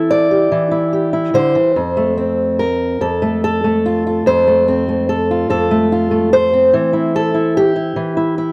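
A fingerpicked steel-string acoustic guitar plays alone throughout this short folk excerpt, its dark, boxy tone sitting up front with an audible finger squeak. The mood is warm and peaceful, moving at an unhurried 48 beats per minute in 6/8 with a straight feel, in F major with the tuning set slightly low at A4 = 439 Hz. The guitar spans from F2 up to D5, opening on a C6/E chord before settling onto F at 1.8 seconds and turning to C/E at 6.7 seconds. The sound is dry and close, in the manner of a 1970s studio recording, with a touch of small-room ambience around the instrument. Lasting about 8.5 seconds, the passage is cut from a longer piece and feels like an intimate glimpse of a gentle solo performance.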